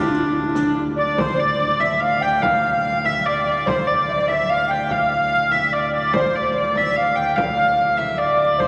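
Driving and mysterious, this short excerpt of a medieval dance in three sets a rich, smooth, up-front hurdy-gurdy melody over a mellow, hollow tenor recorder second line with airy vibrato and chiff, while a nasal cornet stop on pipe organ holds a low drone, a deep frame drum sits dry in the background, and a riq adds dark jingles only from 0.1 to 0.8 seconds, all bathed in cathedral reverb and vinyl crackle.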